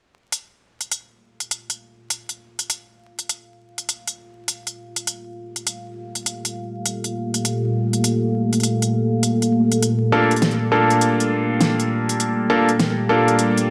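A moody, detuned analog pad thick with chorus, phaser and 12-bit sampler grit opens on a Gm9 chord at 0.3 s, a filter sweep running through it, alongside an electronic pop kit of fat snare and crisp hi-hats in studio reverb, giving this glitch hop cut a gritty, swaggering feel with a swung 16th-note groove. At 10.1 s a bright, intimate baby grand piano enters up front with stabs carrying dub echo, audible action noise and long sustain. A lush hall reverb and vinyl crackle wrap the whole excerpt.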